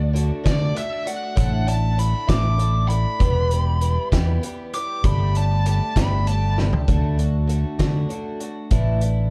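A bluesy, overdriven lead guitar carries the melody in a solo through the first 6.9 seconds, its dark, distorted tone trailed by digital delay, over a woody, shimmering twelve-string acoustic guitar with a boxy, octave-doubled sound from old strings. This nostalgic, jangly folk rock and heartland rock fragment moves in a straight 6/8 at 66 BPM in D major, with a punchy, amped fingered bass sitting up front and a loose indie drum kit with a fat snare, tight kick and rolled-off top. A drum fill at 6.6 seconds leads into a new section, all under light reverb in a dark, warm production.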